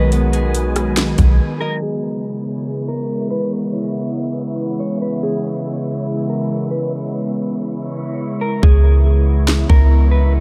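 A warbling, nostalgic pad of detuned sawtooth and triangle tones sits up front in this melancholic, ethereal cloud-rap excerpt, its sustained chords pumping against the beat while a dark, clean electric guitar plays a fingered melody through subtle chorus and diffuse delay. A ringing harp plays arpeggios in the background until 3.4 seconds, and an airy, breathy noise layer hovers like wind throughout. A deep, round 808 bass and a trap kit with hard-clipped kick, sharp snare and metallic hats frame the half-time groove: the kit drops out at 1.3 seconds and the bass at 1.4, and both return at 8.6 seconds with the hi-hats muted. It all sits in a dreamy, low-passed mix soaked in cathedral reverb, with a filter sweep through the long middle stretch.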